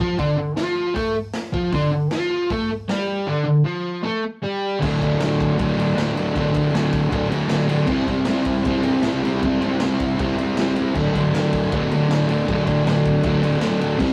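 In a straight 4/4 feel, this swaggering, raw garage rock piece rides on a crunchy, overdriven electric guitar riff, picked and double-tracked up front, opening on a D5 power chord before moving through D, C and back to D from 4.8 s. Beneath it sits a gritty acoustic kit with a boomy kick, medium-tuned snare, hi-hat, crash and ride, its dark cymbals and rolled-off top caught in a pumping small room. The whole take has the rough feel of a rehearsal-room recording, with tube saturation and a moderate studio reverb.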